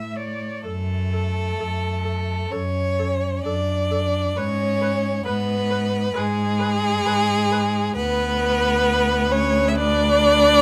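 A close, focused solo violin carries the melody from 0.6 seconds in this serene, slow romantic string quartet movement at 66 BPM in F# minor, played with rubato and vibrato over a clear second violin, a rich viola and a smooth, up-front cello bass, all bowed in light reverb as the harmony moves from F# minor through C#5/G# to Bm/D in a passage cut from a longer piece.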